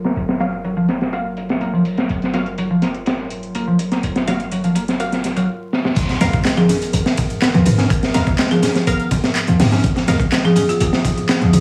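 Crackling vinyl grit and a moderate studio reverb colour this raw, gritty breakbeat cut at 124 BPM in G# dorian, where a crunchy, up-front breakbeat kit with a punchy kick and dark cymbals drives alongside a metallic, overdriven garage kit of handclaps, hats and ride, a deep, boomy 808-style bass, a picked electric bass riff through tube saturation, a lo-fi warbling pad pumping in the background, and muted, detuned dub chord stabs with phaser and delay, as the first half builds through a filter sweep and a drum fill to the drop at 6.0 s, which brings a very quiet electronic impact, soft-handed background congas, and a woody hard-mallet marimba melody with an old record sound entering at 6.6 s.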